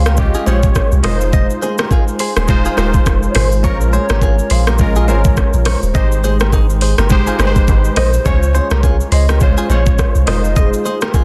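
Afrobeats at 104 BPM with a lilting sixteenth-note swing, romantic and joyful, moving through lush seventh chords from Dbmaj7 to Fm7, Bbm7 and Abmaj7 in this short excerpt cut from a longer piece. A deep, punchy sine sub bass with a pitch-drop attack and an electronic afro-pop kit with knocking kick, metallic hats, rim click and shaker sit up front, while bongos and congas played with soft hands add a very quiet, bright, saturated layer. Warm, round, detuned sawtooth keys with a filter sweep and chorus carry the harmony, a twangy, clean guitar riff plucks through spring reverb and delay, and a hollow, woody clarinet-like synth lead with vibrato sings softly in the background under a dense, heavily limited master.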